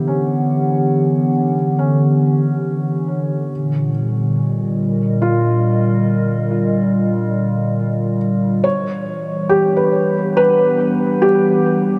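A detuned, warbling pad of sustained chords sits up front from the first moment, its dark, nostalgic lo-fi colour thickened by chorus and its own reverb and shaped by a filter sweep. Beneath it, a felt-muted upright piano fades in with soft, mellow arpeggios treated with tape echo, while a very quiet analog drone holds a single nasal, slowly evolving tone. This serene, melancholic ambient passage in 3/4 drifts from Em7 to D#maj9/A# and back to Em7, everything bathed in a huge, wet reverb. The drone drops away at 8.7 seconds, just after a second felt piano enters at 8.6 seconds with an intimate, natural-sounding melody, its action noise audible and its tape echo trailing behind. Cut from a longer piece, the passage stays gentle and hazy throughout, with the pad and the melody piano sharing the foreground.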